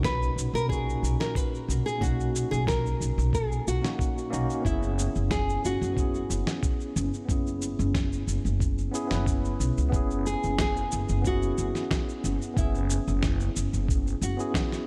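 A steady, straight 4/4 pulse at 91 BPM carries this blissful, smooth sunset chillout passage, cut from a longer piece. Sampler-style electronic kick, snare and shaker set the beat with a compressed, gritty, tape-warm character, the kick thumpy and the snare fat, both sitting in a small room ambience. Up front, a pizzicato upright bass with gut strings gives a woody, dark low end, stopping just before the close at 14.3 seconds. A clean tine electric piano, heard through its built-in speakers and touched with delay, supplies the accompaniment, moving from Bmaj9 to F#9sus4 at 4.7 seconds. Over it, a small, fingerpicked nylon-string guitar carries the melody with its own delay, and the music shifts into a new section at 9.9 seconds, all wrapped in light reverb and a dark, warm production.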